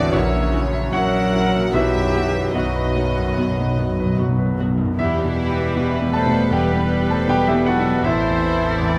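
A brooding, tragic passage from a romantic movement for piano and orchestra opens at once with the clear concert grand piano up front, carrying the melody in E minor with a deep bass and long sustain, while a warm symphonic violin section shares the melody in the background, bowed sul tasto with a soft attack and a floating purity. Around them, a second violin section, an airy concert flute with expressive vibrato and a dark, distant cor anglais weave second lines, and a mellow bassoon and a chamber viola section with light vibrato and a smooth top fill the accompaniment. Rich cello and double bass sections anchor the bass, and very quiet French horns hold sustained chords throughout, joined by a punchy trombone section until 4.6 seconds. Timpani played with medium mallets on calf heads add a fill on a single low note from 1.7 to 4.9 seconds as the harmony moves from F#7/A# to B, then settles into Em at 5.0 seconds and turns to Am near the close. 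The tempo sways freely around 73-82 BPM in 4/4, and the close, detailed sound sits in light reverb, a fragment cut from a longer piece.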